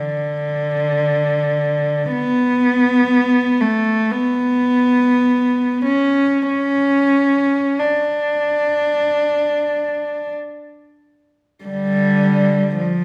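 A lone bowed cello carries this short, lyrical classical fragment, played by one player sitting close and up front in the sound. The playing is serene and expressive, moving in a free rubato around a slow pulse of 39-62 BPM in 4/4, with the line staying between D3 and D4. The tone is soft-edged and airy, with sul tasto bowing, gentle attacks and a light vibrato that give it an intimate character. A moderate reverb from a church or concert hall, about 1.3 s long, surrounds the instrument. After a longer opening passage, a new section begins at 11.7 s and runs to the end of the clip at 13.0 s, where the music is cut from the larger piece.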